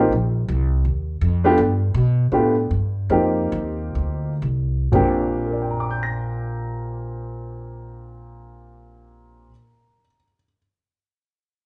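Energetic and swinging, this short big band swing excerpt in Bb major moves at 115-164 BPM with a slowdown from 1.6 to 4.9 seconds, as a dark, mellow baby grand piano and a woody, pizzicato upright bass sit up front in a large studio room, working through F7sus4 and G7 before landing on Bb6, with the bass stopping at 9.5 seconds and the piano at 10.6 seconds.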